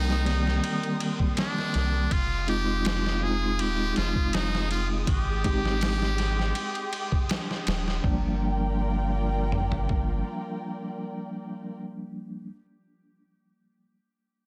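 A dense, heavily limited modern master with light reverb frames this brooding, melancholic trip hop fragment, cut from a longer piece and moving at 81 BPM in a straight 4/4 in G phrygian. Up front, a sampler-style drum kit sounds compressed and pitched down, with a thumpy kick, a medium-tuned snare, hi-hat, ride and toms, all carrying a tape-warm, gritty small-room character. Beneath it, a soft dub sub bass, deep and round with a fast attack, holds sustained low notes. A mellow tine electric piano, clean and direct, plays accompaniment through tremolo and tape echo, while a dark symphonic string section, distant and woody with vibrato, spreads lush bowed chords behind it. Over the top, a buzzy, thin trumpet with a metal mute carries the jazz-style solo melody with light vibrato, vintage 12-bit sampler grit and tape echo, stopping at 7.3 seconds. The harmony moves from Cm7 through Fm7 to Abmaj7 before settling on Gm7 at 8.0 seconds, and the piano carries on until 12.5 seconds.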